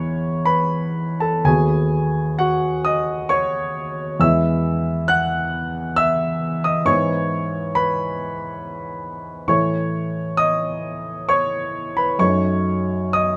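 This is a romantic classical nocturne for solo piano, melancholic and yearning in mood, in E major and 3/4 at a slow 67 BPM. The beats are uneven, and the rubato lets the phrases breathe and stretch. A grand piano carries the whole 13.4-second fragment alone, ranging from D#2 up to F#6, with a warm, polished tone that sits present and up front. The harmony moves from E through B7/D#, back to E, then E/G# and A, before arriving at D#m7b5/F# at 12.2 seconds; the passage is cut from a longer piece. A light reverb gives the instrument a gentle sense of space around its close sound.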